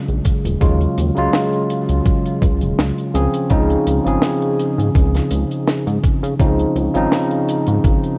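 Vaporwave at 83 BPM in 4/4 with a light 16th-note swing, nostalgic and melancholic, this brief cut moves from Ebm11 to Dbmaj9 at 3.1 seconds as a bright, up-front tine electric piano with subtle chorus, 12-bit sampler grit and tape echo carries the chords over a glossy, mellow pulse-wave chorused synth bass, a thumpy sampler-style electronic kick re-recorded in a large room, and a dry, dark reggae kit whose high-tuned snare and hi-hat sit lower in a light, small-room, cassette-tinted mix.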